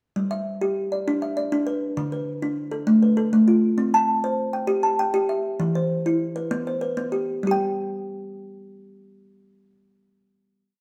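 A lone kalimba opens the piece at 0.2 s, its thumb-plucked notes short, woody and up front, with the hollow resonance of a box beneath them. This is a southern African traditional piece built on an mbira-style interlocking cycle, moving in 12/8 at 132 BPM counted in dotted quarters with a straight, rippling feel. The interlocking ostinato spans D3 to A5 and sits in G mixolydian, cycling through G, Dm, C and Em. At 7.4 s the pattern gives way to a single final note that rings until 10.8 s. A large studio reverb with a 1.4-second tail surrounds the instrument, giving the live room sound a warm, spacious glow.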